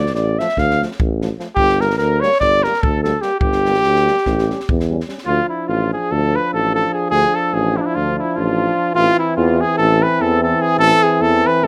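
A brisk, straight 9/8 pulse at 293 BPM in eighths drives this bittersweet, virtuosic Balkan brass band passage, cut from a longer piece, moving from G dorian sharp4 to D dorian sharp4 at 5.3 s. An up-front, mellow cornet with light vibrato carries the melody over a very quiet, smooth-topped clarinet second line, a distant, roomy French horn and a punchy euphonium in the accompaniment, and a prominent tuba with its own gentle vibrato holding the bass, all the winds phrased in a classical style. A dry, compact acoustic cocktail kit with a high-tuned snare and a punchy kick plays only until 5.2 s, and moderate studio reverb colors the rough home-demo mix.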